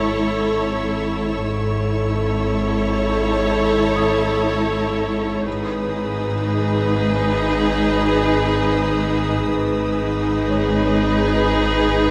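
Cinematic suspense score in G# phrygian at a slow 60 BPM, ominous and mysterious, with a clear, intense violin section carrying the melody over a smooth second violin line and a soft-attack, distant viola accompaniment, as a glassy, ethereal glass harmonica sustains chords in the background. Underneath, a lush cello section and a bowed double bass hold the bass while a warbling, chorused analog drone evolves on a low G#. A focused, high violin texture and a very quiet felt-muted upright piano, with audible action noise, add faint detail, all set in a wet scoring-stage reverb as the harmony moves from A/G# to G#m at 5.5 seconds.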